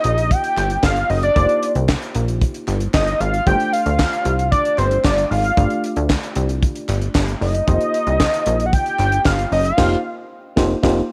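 A fat, detuned analog lead with chorus and slapback echo carries the melody in this slick, late-night early-eighties boogie funk excerpt at 114 BPM, ending at 10.1 seconds. Beneath it, a punchy, plucky analog bass and a tight, dry funk drum kit with bright cymbals and handclaps sit up front, while a mellow FM electric piano supplies accompaniment over F9sus4 and G9sus4 chords and a very quiet, distant group handclap joins from 0.6 seconds. The recording has little reverb and closes on a band accent beginning at 9.8 seconds.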